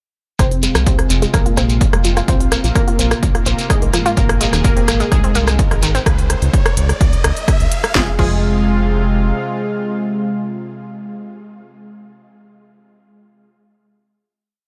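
A dry mix with little reverb carries this dark, dramatic melodic techno piece at 127 BPM in F minor, where a juicy, resonant sweep polysynth plays a repeating riff in octaves with chorus, delay and sidechain pumping, doubled an octave higher by a very quiet, glassy wavetable pluck and set over a lush, warbling unison pad and a round analog bass in a dotted rhythm. A punchy, tape-warm four-on-the-floor kick sits up front beside a programmed kit of cracking snare, smooth closed hats, rim and crash, while a grainy hand-played shekere adds sixteenths until 6.0 seconds and a nasal, wave-folded analog pluck runs a 16-step arpeggio in the background. Through the build, filter sweeps open the polysynth and both plucks over Fm, Bbsus2 and Abadd9, and a riser enters at 3.9 seconds. The final Fm chord arrives at 8.0 seconds, and the drums drop out shortly after at 8.3 seconds.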